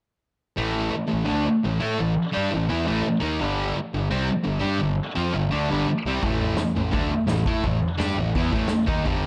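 A thick, bright fuzz guitar, double-tracked, picked and up front, drives a swaggering, menacing garage rock riff in A minor at 170 BPM from 0.6 seconds, moving through A5 and G5 power chords in a straight 4/4. Beneath it, a round, punchy fingered electric bass adds overdriven fuzz, and a vintage acoustic drum kit enters at 6.2 seconds with a punchy kick, medium-tuned snare and toms, its rolled-off top carrying 12-bit sampler grit and a pumping room sound. Light reverb and small room ambience surround this short cut from a longer piece.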